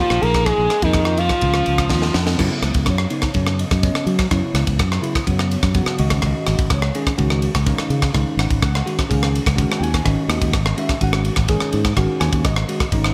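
Intense and driving, this electric jazz fusion excerpt runs at 125 BPM in a straight 4/4. It opens with a smooth, sawtooth portamento lead carrying the melody through chorus, digital delay and vibrato, alongside a biting, double-tracked overdriven guitar; both fall away by 2.2 seconds, as a drum fill leads into the next section at 2.4 seconds. A clean, bell-like tine electric piano with phaser supplies the accompaniment over a growly, amped fingered bass and a tight, up-front funk kit with a high-tuned snare, rim clicks, ride and crash in gated reverb, all set in bright 1980s-style digital production with light small-room ambience.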